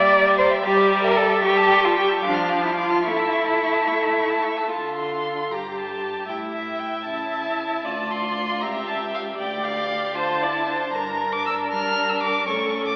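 A 6/8 pulse at 77 BPM in dotted quarters drives this quick classical-period movement for string quartet in D minor, pushed and pulled by rubato into a dramatic, urgent mood. The first violin carries the melody high between E5 and F6, its tone warm with vibrato and expressive portamento, while the second violin sounds a rich, focused second line from a more distant spot. The viola supplies an even, smooth accompaniment, and the cello, the loudest of the four, anchors the bass with a warm, expressive, portamento-laden voice that also climbs high in its range. All four bowed players run together from the start to 13.0 seconds, with the harmony moving through a tense half-diminished opening and dominant chords before a new section begins at 4.7 seconds, settling on D minor and closing on G minor. A wet concert hall reverb with a 2.5-second decay places the quartet further back in the room, and the whole passage carries the thin, boxy colour of an AM radio broadcast, cut from a longer piece.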